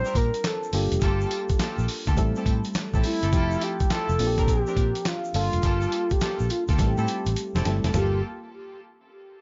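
A digital ambience with its top end rolled off frames this slick, punchy excerpt of swung new jack swing R&B at 104 BPM in G dorian, where a horn-like, warbling synth lead with chorus and tape echo carries the melody over a mellow FM electric piano, veiled con sordino string stabs, a round, foam-muted fingered electric bass, a gritty, compressed sampler-style drum kit with thumpy kick, handclaps and tambourine that plays a fill from 6.8 to 7.9 seconds, and a grainy egg shaker in the background.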